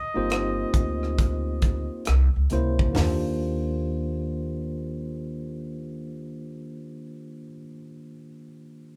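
A slow 68 BPM groove in 4/4 with a sixteenth-note swing sets a relaxed, sensual neo-soul mood in Eb major, opening this brief fragment of a longer R&B piece. A tight funk drum kit sits up front with a high-tuned snare, a tight kick, hi-hat, rim clicks and toms, sounding natural and acoustic in a small room before it drops out at 3.2 seconds. Beneath it, a woody, growly upright bass plucks dark low notes and carries on until 7.5 seconds, after which the clean tine electric piano, heard through its built-in speakers, rings on alone with its warm accompaniment. A breathy flugelhorn opens the fragment with a short jazz-style solo line, floating a scooped high note with light vibrato before falling silent at 2.1 seconds. The harmony moves from a lush Ebmaj13 through a tense C7b9 and back again, and light reverb gives the feel of a band playing together in one room.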